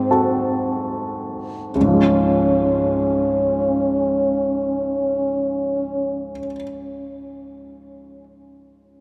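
A warm French horn sings the melody up front with vibrato in a poised classical manner, holding to a narrow compass between C4 and Db4 before falling silent at 6.3 seconds. This tender, serene romantic duo is a fragment of a longer piece in Db major, moving at a slow 40 BPM in 4/4 with a flexible rubato feel that slows down through the opening 1.7 seconds. Beneath the horn, a clear, polished grand piano provides intimate accompaniment from Db2 up to A5, its short sustain and audible action noise keeping it present and close. The harmony opens on a tense Ab7b9 and resolves to Db at 1.7 seconds, where the music settles into its second passage. The piano carries on alone until 9.0 seconds, both instruments bathed in a wet cathedral reverb that lets every note ring out across a vast, echoing space.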